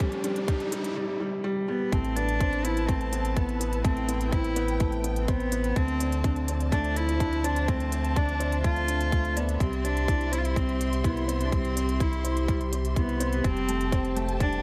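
This excerpt opens with a short electronic riser over a felt-muted upright piano riff with tape echo, dark symphonic strings holding sustained chords with sidechain pumping, and overdriven electronic kick and crisp hi-hat, building for 1.9 seconds before the drop. Just before the drop, a close, airy cello takes up the melody in sul tasto with light vibrato, and at the drop it is joined by a round, deep analog bass that pumps alongside the lush background strings, moving from Amadd9 through Dm7 and C. The result is intimate, cinematic piano and strings electronica in A minor at 125 BPM, with a tight, up-front kick and a small-room ambience.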